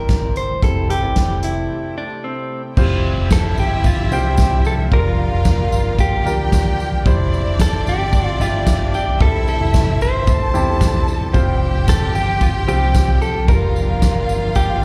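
Piano-driven pop at 112 BPM in F major with a warm, anthemic mood, cut from a longer piece and heard live through a club PA, where a clean, compressed direct electric guitar carries the melody with spring reverb and slapback echo over a woody upright piano with audible action noise, an airy breathy pad, a round, punchy foam-muted bass and a soft-mallet drum kit with a boomy kick and dark cymbals, before a break at 1.7 seconds leads to a lush bowed violin section and a jingly tambourine entering at 2.8 seconds.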